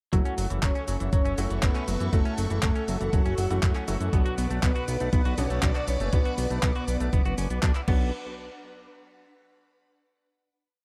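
A melodramatic, danceable italo disco piece in B minor at 120 BPM opens at once with a gritty four-on-the-floor electronic kick, a fat, detuned sawtooth bass sequenced in sixteenth notes, a tape-toned 12-bit drum machine of cabasa, handclaps, hi-hat and crash, a twangy clean electric guitar cycling a four-step arpeggio through delay, a brilliant, worn grand piano pushing syncopated chords in the background, and a swirling phased string machine pad, all beneath a round, brassy synth melody with vibrato and partial octave doubling, moving from F#m7 to Bm before a final hit at 8.1 s in a dark, ambient mix.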